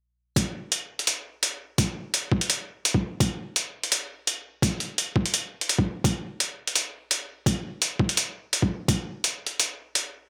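The sound is dry and close, with little reverb, though both drum parts carry the character of having been re-recorded in a large room and sit up front in the mix. This dark, heavy fragment of half-time drum and bass, cut from a longer piece, moves in 4/4 with a slight swing on the sixteenths. From 0.4 seconds, an electronic kick drum and an electronic hi-hat play together, both with a sampler-style, compressed, pitched-down sound. The kick is gritty and thumpy, with high-pass filtering on both the drum and its room sound. The hi-hat shares that same rough grain, and it plays alone after the kick stops at 9.0 seconds, carrying on until 10.0 seconds.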